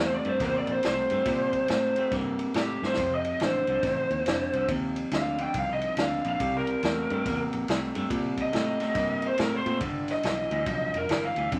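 Gritty and swaggering, this excerpt from an electric blues shuffle at 140 BPM in 4/4 swings its eighths over a C7, F7 and G7 progression, with a lead guitar through a small cranked amp playing an overdriven, picked solo from G4 to G5 up front throughout. Beneath it, a slightly broken-up electric guitar through a small old amp plays a lo-fi riff, a fingered electric bass adds a dark, round, foam-muted line, and a vintage drum kit with tight kick, medium-tuned snare and ride cymbal enters at 0.2 seconds and plays a fill at 2.8 seconds. The moderate studio reverb carries vinyl crackle and a faint mains hum, giving the recording a dusty vintage feel.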